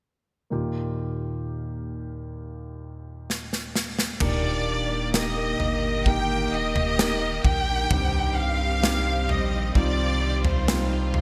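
A slow, straight 4/4 pulse at 65 BPM carries this tender, emotional pop ballad in Eb major, heard as an excerpt cut from a longer piece. A concert grand piano with a deep bass opens alone at 0.5 s over an Ebadd9 chord, until a drum fill on the modern studio kit arrives at 3.3 s, its punchy kick, medium-tuned snare, toms and crash sitting up front with an airy, polished gated reverb. At 4.2 s the arrangement blooms on an Ebmaj7: a lush, bowed violin section takes the melody up front with focused vibrato and a smooth top. Beneath it, a background string section holds even, sustained chords, a very quiet fingerpicked steel-string acoustic guitar plays arpeggios, and a round, mellow sine sub bass anchors the low end. The harmony moves to Cm at 7.9 s, all wrapped in light reverb and small room ambience with a bright 1980s-style digital production.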